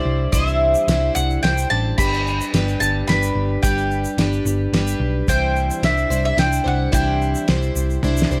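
A round, up-front mandolin carries the jangly melody through a touch of analog delay in this open-road folk rock and heartland rock excerpt in 3/4, set over a shimmering, octave-doubled plugged-in twelve-string acoustic guitar moving between Cadd9 and G, an amped hollow-body short-scale electric bass, a cloth-damped, thuddy drum kit with a fat snare and dark cymbals that ends on a fill at 8.0 s, and a grainy egg shaker sitting low in the mix, all within light reverb.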